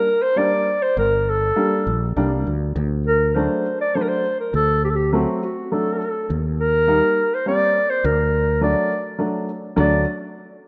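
Bittersweet yet festive, this klezmer excerpt in 3/4 at 102 BPM speeds up as a breathy, subtone clarinet with light vibrato carries the jazz-style melody up front, over a woody, slightly detuned upright piano and a round, dark fretless electric bass that enters at 1.0 seconds, moving from Gm through D and Eb in D phrygian dominant within a lush hall reverb and a rough home demo mix.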